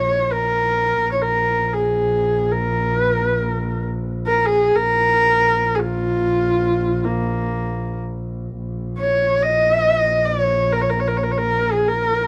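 In free time, this Mongolian folk piece unfolds in the Bb yu mode with a solemn, windswept mood, heard here as a short passage of 12.3 seconds cut from a longer piece. A single horsehead fiddle carries the melody throughout, its bowed horsehair strings giving a husky, focused voice that sits up front and ranges from Bb3 to Eb5, shaded with vibrato and portamento. Beneath it, one double bass holds a bowed drone on Bb1, rich and smooth, even and set at a distance, with its own vibrato. The opening phrase returns at 8.6 seconds, keeping the music anchored in one place. The sound is dry and close, in the manner of a 1970s studio, with only a small room's ambience around the two players.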